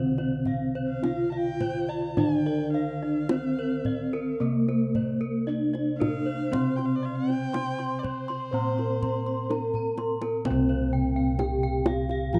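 A straight, unhurried 4/4 pulse carries this serene, ceremonial Javanese gamelan excerpt in slendro tuning. A mellow bronze metallophone struck with padded disc mallets leads the melody with shimmering beats from its paired tuning, over a dry, full, close-miked metallophone accompaniment played with a wooden mallet. Round, mid-forward bossed gongs and a bright horn-mallet metallophone spin arpeggios above soft, padded-beater gongs in the bass. A tight kendang played with soft hands keeps time and plays a fill from 9.7 to 10.5 seconds, just before the piece moves into a new section. A quiet, nasal erhu adds a smooth second line with vibrato and portamento from 0.9 to 9.7 seconds, all set in light studio reverb with a rough home-demo feel.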